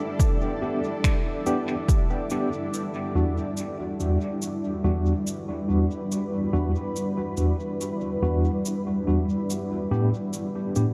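Deep and spacious, this ambient dub fragment, cut from a longer piece, sits in a dark production wrapped in a moderate concert hall reverb. A granular cloud pad holds sustained chords throughout, its detuned sine and sawtooth tones forming a blurred, evolving haze with slow attacks, long release and its own built-in reverb. An overdriven electronic kick drum punches up front from 0.2 s until it stops at 2.1 s, while cabasa and finger snaps, played acoustically in a studio room, sit quietly in the mix through dub echo. A worn, slightly out-of-tune tine electric piano plays stabs through a combo amp, shaped by medium tremolo, a low-pass filter and dub echo. From 2.7 s a filter sweep moves over the pad as the harmony shifts from A7sus4 to Em7, returning to A7sus4 near the close.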